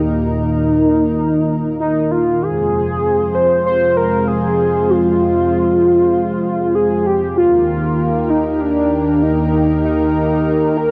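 A velvety synth lead with chorus, cassette-tape wear and delay sings a nostalgic, dreamy synthwave melody over a thick, warbling unison pad roughened by vintage 12-bit sampler grit, both sitting up front in a lush hall reverb in this brief fragment cut from a longer piece.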